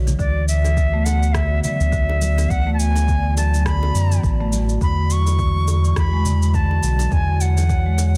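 A soft electronic kick and a produced cabasa and rim click, with a lightly clipped snare, set a swung 104 BPM 4/4 groove while bright, hard-handed congas and bongos sit in the background of this peaceful organic downtempo piece. A round, deep analog bass sits up front, and with a warbling, nostalgic tape-like pad it breathes with sidechain pumping, the pad holding dark chorused chords that move from D69 to E9. Woody soft-mallet marimba arpeggios with tape echo flow beneath a pure, reedy bansuri melody, close-miked with vibrato and its own tape echo, all in a light digital ambience under a dense, heavily limited modern master.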